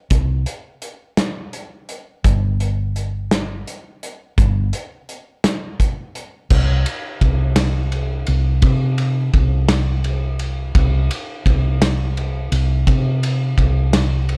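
Nostalgic and open-road in spirit, this short folk rock and heartland rock excerpt moves at an unhurried 56 BPM in a straight 6/8. A hollow-body short-scale electric bass, played with the fingers, carries the low end from 0.1 s to 14.4 s, its tone dark, round and amped, sitting up front between G1 and C3. Alongside it, a loose indie drum kit plays across the same span with kick, snare, hi-hat, ride and crash, heard in a pumping studio room with dusky cymbals, a medium-tuned snare and a punchy kick, its top end rolled off. The production is dark and warm, with little reverb, giving the pair an intimate, grounded presence. The passage shifts into a new section at 6.5 s, carrying the same straight feel through to its end.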